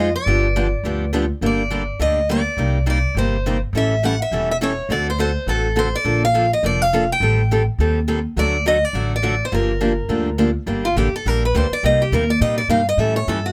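Acoustic string swing in the jazz manouche style, fiery and hard-swinging, with a bright, boxy picked parlour guitar carrying the melody over a second parlour guitar's fresh-stringed accompaniment and a woody pizzicato upright bass, all three close and up front in a dry, detailed room, the lead guitar's finger squeaks audible as it takes a solo from 10.7 seconds over minor-key changes.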